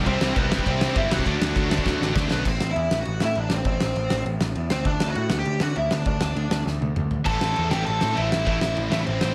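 A straight, driving 4/4 punk rock pulse comes from a loose indie drum kit that sits up front with a punchy kick, fat snare, dark cymbals and a pumping room sound, with drum fills at 1.9 and 6.7 seconds in this rowdy, rebellious cut from a longer piece. A round, dark overdriven picked bass holds down the low end while a lead guitar through a small cranked amp carries the melody from the start, and three riffing guitars (a bright overdriven one, a double-tracked high-gain one and a very quiet sludgy one) sit in the background, drop out around 2.5 seconds and return at 7.2 seconds. The chords move from C and D to A minor and D under light reverb.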